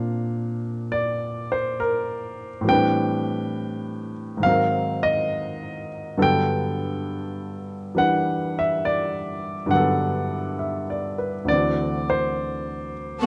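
A baby grand piano opens this late-night jazz fragment, its natural, up-front tone carrying a tender, unhurried mood at 68 BPM in 4/4 with a gentle swing on the eighth notes. In G major, the piano accompaniment spans from D2 to G5, drifting through rich chords from Bbadd9 and Am11 to Ab9 before settling on Gmaj9 and reaching D7 at 11.5 seconds. Closely captured in fine detail, the warm instrument sits within a moderate large-studio reverb that adds a soft sense of space.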